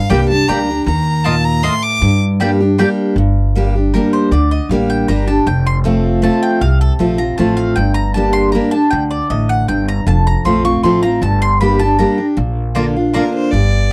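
Lonesome and rustic, this short bluegrass passage moves in a straight three-beat metre over a brooding minor progression. A clear, focused fiddle opens with a brief bowed solo sung out by one player with light vibrato, then drops away and returns only for the closing moments at 13.2 seconds. The mandolin takes over with a bright, round solo from 3.2 seconds, its doubled strings cutting through in stabbing figures. Underneath, a full-bodied picked dreadnought guitar carries the accompaniment throughout, while a woody, thumpy upright bass with gut strings anchors the low end up front. The sound is dry and close, in the manner of a 1970s studio session, which gives the fiddle, guitar and bass an intimate presence.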